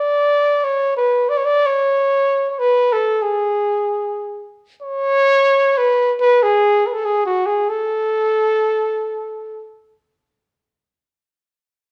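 A dark, up-front trumpet opens this proud, romantic Mexican folk passage, playing alone in a classical style with light vibrato between F#4 and D5 until 9.7 seconds. It moves at 93 BPM in 4/4 with a light swing on the eighth notes, in A major tuned to A4 = 437 Hz. A moderate, large studio reverb gives the sense of a band playing live in one room, and a new section begins at 10.3 seconds before this cut from a longer piece ends.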